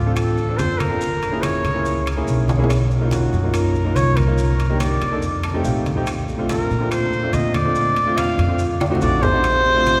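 Steeped in a long cathedral reverb from a church or concert hall, this lively, sophisticated Afro-Cuban jazz excerpt at 142 BPM in Bb major features a distant, roomy trumpet soloing up front with light vibrato over a steel-strung pizzicato upright bass and a warm grand piano that adds a fill at 5.2 seconds, while ringing metal-shell timbales and grainy vintage maracas sit in the background alongside thin-skinned, low-tuned congas and very quiet woody claves, and a bright baritone saxophone with a soft attack enters at 9.0 seconds.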